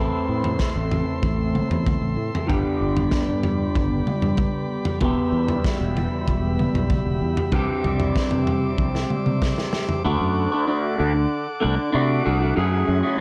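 Psychedelic rock with a hypnotic, mysterious mood, cut from a longer piece, where a slightly broken-up, lo-fi electric guitar played through a small old amp carries a phaser-tinged riff up front over the chords Am, G, Em and Cadd9, with a round, dark fingered bass underneath. A crunchy breakbeat kit enters at 0.4 s, gritty and saturated with a rolled-off top, tight kick, snare and toms, and plays a drum fill from 8.8 s before dropping out at 10.0 s. Behind them a reedy vintage combo organ holds sustained chords with light vibrato, and the passage shifts to D and F#madd9 from 10.1 s.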